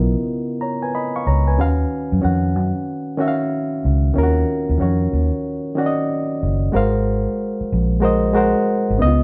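R&B and neo-soul with an introspective, smooth mood at 93 BPM and a swung sixteenth feel, this short cut from a longer piece pairs a reedy, lightly overdriven electric piano heard through its built-in speakers, moving from Db9 to Ebm9 and arriving on Ab13 at 6.7 seconds, with a dark, round, foam-muted vintage fingered electric bass, both placed up front as a band playing live in a small room with moderate reverb.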